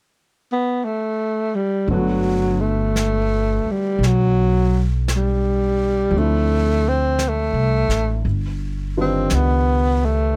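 Intimate and romantic, this slow jazz ballad in G major swings gently at 57 BPM as a breathy, mellow tenor saxophone carries the melody alone from 0.5 s with subtone, vibrato and scooped notes, joined at 1.9 s by a woody, thumpy pizzicato upright bass on gut strings, a warm concert grand piano with audible action noise sitting in the background, and an airy brushed drum kit on snare and hi-hat, all captured dry and close as the harmony moves from Gmaj9 through Dm7 to G7b13 in this fragment of a longer piece.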